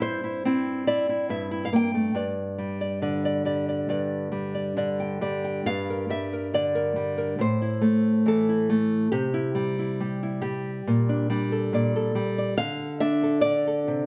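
Folk music for solo nylon-string guitar, this short piece cut from a longer work carries a reflective, haunting mood at an unhurried pace in a straight four-beat feel. The single guitar is fingerpicked and sits up front, with an acoustic, warm tone and a small body, ranging from G2 up to G5. The opening passage moves from Cadd9 to an open G5, then at 5.6 seconds a second section begins, passing through Gm, Am and C before settling on Gmadd9/Bb and a bare D5. The instrument rings out in a moderate, large studio reverb that lets each note linger. The guitar plays alone from start to finish, ending at 14.1 seconds.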